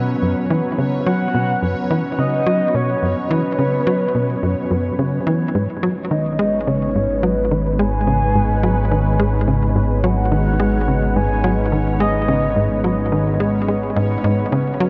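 A straight 4/4 pulse drives this expansive, hypnotic stretch of sequencer-driven space music, cut from a longer piece and bathed in a huge, dark reverb with a long tail. A tight, punchy sequencer bass runs its driving riff up front throughout, its sawtooth and square-wave tone sharpened by ring modulation and a fast, decaying filter pluck, with delay trailing each note. Above it, a detuned sawtooth pad holds sustained chords with a slow filter swell and chorus, while a quieter resonant texture bubbles in random filter steps through its own built-in reverb. From 1.1 s a soft, round lead sings the melody, its triangle tone layered with a sine sub octave and a wave-folded edge, carried on vibrato, chorus and delay. Shortly after the harmony moves from a suspended chord to a minor one at 5.6 s, a nasal analog drone enters low and up front at 6.6 s, its pulse-width modulation and moving notch giving the close a slowly evolving weight.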